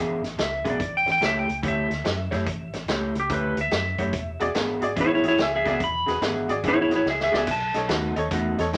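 A slightly broken-up, compressed electric guitar riff through a small old amp opens this swaggering electric blues shuffle, with a round, punchy, foam-muted bass underneath. A gritty vintage drum kit with dark cymbals, a tight kick and a rolled-off top joins almost at once, keeping a soulful swing as the chords move from E7 to A7 and back. The clean lap steel sits up front and carries the melody with slide and volume swells, its tone warm. At 4.4 seconds a brilliant, woody upright piano adds open, short-sustained accompaniment in the upper middle register. A drum fill at 7.1 seconds leads to a B7 turnaround before this fragment of a longer piece cuts off, all set in a moderate club reverb.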